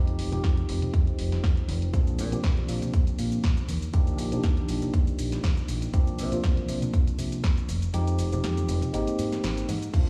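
Filtered disco house with a joyful, feel-good lift and a lightly swung groove, cut from a longer piece. A clean tine electric piano, heard as if through built-in speakers and treated with phaser and a low-pass filter, moves through Fm7, Bb7, Ebmaj7 and C7sus4 chords over a dark, round fingered electric bass, and both pump against the sidechain. An up-front electronic kick sits with a house drum kit of punchy snare, brilliant hi-hats, cabasa and crash cymbal, while warm, close tambourine and congas stay in the background; the kick drops out at 7.9 seconds, all within a fairly dry stone-room ambience.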